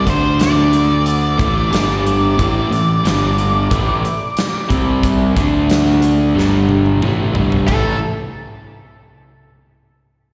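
Brooding and smoky, this excerpt of blues rock and southern rock power-trio music moves at 91 BPM in A minor, with a dark, fuzzy octave-fuzz lead guitar carrying the melody over an up-front, double-tracked raw garage guitar riff with overdrive and slapback echo, a fuzz picked electric bass, and a huge arena drum kit with bright cymbals and a punchy kick that plays a fill from 6.4 to 7.7 seconds, all heard as a live gig through the venue's PA with recital hall reverb.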